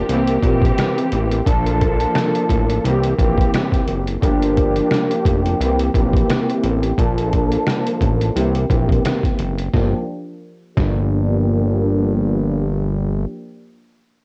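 Reflective and moody, this boom-bap hip-hop cut from a longer piece pairs a clear, lush bowed string section, close and focused with vibrato and a cassette-tape, filtered tone under a sweep through its first 9.7 seconds, with a fat, thick, detuned sawtooth bass that sustains and evolves under its own filter sweep. A muffled, pitched-down sampler-style drum kit with a thumpy kick, medium-tuned snare, rim click and hi-hat, compressed and re-recorded in a small room onto cassette, sits up front with the strings and bass until it stops at 11.0 seconds. Light reverb and the swung groove shape the home-cassette recording as the chords cycle through C7, Bbmaj7 and Gm7.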